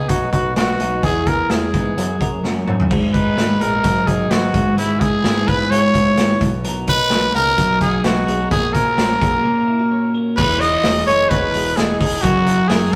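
Over a straight 4/4 pulse, this bright, breezy slice of jangly indie pop sets a raw garage drum kit, punchy and gritty with a pumping small-room sound, under a fat, detuned analog bass with a quick filter pluck. A twangy, clean twelve-string electric guitar spins compressed arpeggios while an up-front growling trumpet carries the melody with raspy, scooped notes. A drum fill at 2.4 seconds leads into a new section at 2.9 seconds, and another begins at 10.4 seconds, all heard through a stone-room reverb in a rough rehearsal-room recording cut from a longer piece.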